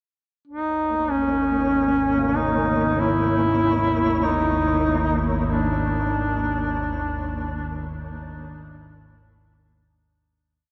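Drifting in free time, this unsettling, desolate dark ambient drone piece opens at 0.5 s as a mellow, detuned analog drone fades in with subtle chorus beneath a clear, distant duduk whose vibrato-laden, scooped call phrases carry delay until 7.9 s, while a flickering, grainy texture holding a high note fades out and a very quiet bronze gamelan-type metallophone, entering at 2.2 s, rings out arpeggios in two slow loops of unequal length that drift against each other, the whole piece set inside a huge, wet ambient reverb.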